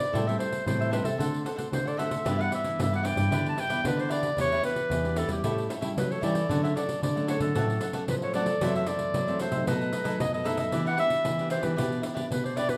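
This nostalgic, bittersweet samba and choro fragment opens with the whole ensemble playing together at 114 BPM in a straight 4/4, set in E minor. A warm clarinet carries the melody in a classical style, sitting up front as the solo voice from G4 to A5. Beneath it, a picked cavaquinho adds a crisp accompaniment, while a fingerpicked classical nylon-string guitar fills in from further back. A second nylon-string guitar plays the bass line with the thumb, its finger squeak audible, and a close, jingly pandeiro struck with hard hands drives the groove. The harmony moves from Am7 through D7 and G6 to Em7, then A7 to Dmaj7, before F#m7b5 and B7 lead back to Em7 at 10.7 seconds. All of it sits in a large studio room with a generous reverb, and the passage is cut from a longer piece at 12.8 seconds.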